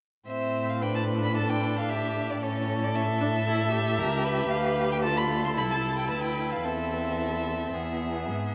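Set in 4/4 at 113 BPM with a rubato feel, this quick classical-period movement for string quartet in A minor has a stormy, urgent character. From 0.3 seconds a single bowed first violin carries the melody up front, its tone rich, smooth and even, with a light vibrato and a close presence. Beneath it a second violin and a viola, each played by one player, supply a focused second line and accompaniment with vibrato and a smooth top. A bowed cello anchors the bass with a warm, expressive tone, vibrato and portamento. The harmony moves from A minor through A7 to D minor, then returns to A minor over C and over E before arriving on an E chord. The quartet sounds in a vast, echoing space with a wet cathedral reverb, and the passage, cut from a longer piece, stops at 8.5 seconds.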